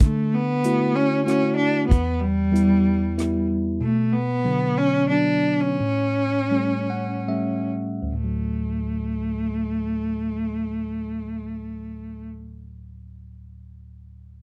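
Tender and intimate, this short folk excerpt in D major moves in a gentle 3/4 at a tempo between 68 and 95 BPM, slowing down from 3.8 to 8.1 seconds. A single bowed cello carries the melody up front, its rich, intense tone marked by vibrato and a smooth top. Beneath it, a bright, bell-like tine electric piano plays a clean, direct accompaniment across a broad range, sounding on until 14.4 seconds, after the cello stops at 12.3 seconds. An acoustic country drum kit with hi-hat, rim click and a punchy kick is heard only in the opening 3.3 seconds, airy and polished in its studio room. The chords move from Dadd9 through Em, Bm and A7 before settling on D, all captured in a dry, close 1970s-style studio sound with light reverb.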